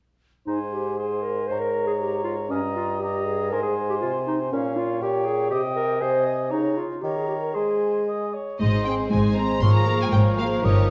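The recording has a dark, warm character, set on a scoring stage with a moderate reverb that lends the orchestra a sense of space. This is a quick, cheerful classical-period movement in 2/4 for symphony orchestra, heard as a short cut from a longer piece. From 0.5 seconds the woodwinds carry it alone: a mellow clarinet, an airy concert flute high above it and a cor anglais with light vibrato share the second lines from a distance, while a punchy bassoon supplies the accompaniment beneath. At 8.6 seconds the strings enter, with a rich, expressive violin section taking the melody and a second violin part playing in the background. A lush viola section with portamento fills the accompaniment, and smooth cellos and focused double basses anchor the bass. The harmony moves through simple progressions in Ab major that return to the home chord, keeping the mood spirited throughout.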